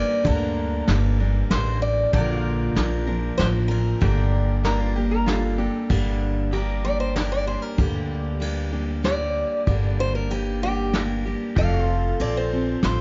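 Honky-tonk and classic country in 3/4 at 95 BPM, this heartbroken, dusty excerpt in G minor is cut from a longer piece and moves through Gm, Bb and Gmadd9 before settling on Gm and closing toward F. A boxy, bright archtop guitar carries the picked melody, while an up-front, full-bodied dreadnought with fresh strings and audible finger squeak plays the accompaniment and takes a solo from 5.9 seconds onward. Behind them, a clean, compressed pedal steel sustains chords with volume swells and slide, sitting in the background, and a lap resonator guitar adds a brief metallic, nasal slide line played with fingerpicks between 4.6 and 5.9 seconds. The brush kit enters at 0.2 seconds with a punchy kick, medium-tuned snare, ride and crash, its top rolled off in a small-room sound, and a woody, growly pizzicato upright bass sits up front with a thumpy, dark tone. The whole production is dark, with a moderate recital-hall reverb giving the players a gentle sense of space.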